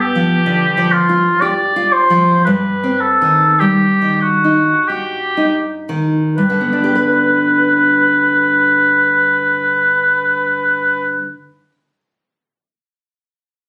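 In a rubato triple metre that slows through its opening 6.4 seconds, this lyrical romantic duo sets a clear, vintage-toned oboe with light vibrato up front, singing the classical-style melody until 11.1 seconds. A full-bodied, fingerpicked nylon-string guitar carries the warm accompaniment, moving from G7 to Cm/G before settling on G as a second section begins at 6.4 seconds. The sound, caught on a phone in the room with light reverb, is cut from a longer piece.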